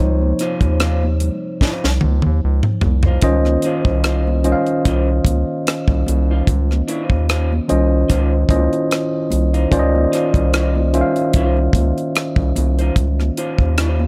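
R&B with a neo-soul lean, soulful and sensual, moving at 74 BPM with a lightly swung sixteenth feel in Db major, opening on a Dbmaj9 chord in this short excerpt. A worn, slightly out-of-tune tine electric piano takes a solo over a round, deep analog bass and very quiet, ringing congas, and a tight funk kit with a high-tuned snare enters at 0.4 seconds and plays a fill from 1.6 to 3.2 seconds. A slightly broken-up, lo-fi picked electric guitar adds a second line in a small room that gives the whole an intimate, close feel.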